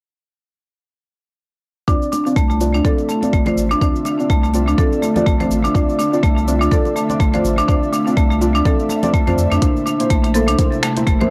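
Afro house at 124 BPM in D minor, warm and earthy, with a swung 16th feel, this excerpt moves from Dm7 to C7 at 9.6 seconds. From 1.9 seconds an up-front deep electronic kick, a layered deep house kit of cabasa, finger snaps and hi-hat, and a round, nasal analog bass pumping under the sidechain set the groove, alongside a woody, hard-mallet marimba arpeggiating up front with tape echo and soft, detuned chord stabs coloured by chorus and phaser. Bright, dry congas enter at 2.1 seconds in the background, and an ethereal, airy pad with ensemble chorus and slow-attack sustained chords arrives at 2.3 seconds, all set in light reverb with the hazy character of a home cassette recording.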